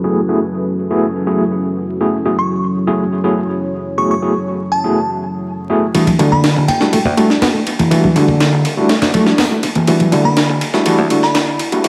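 Heard through an echo-heavy mix with plate reverb and vinyl crackle, this swaggering, funky breakbeat excerpt opens on a dark, detuned analog pad pumping beneath barky, tremolo-laden tine electric piano stabs roughened by 12-bit sampler grit, while a crystalline FM bell melody enters at 2.4 s, and at 5.9 s a reedy overdriven electric piano riff and a compressed, up-front sampler-style kit with thumpy kick and high-tuned snare drive the build-up, soon joined by ringing bongos and congas and a growly picked bass tucked in the background.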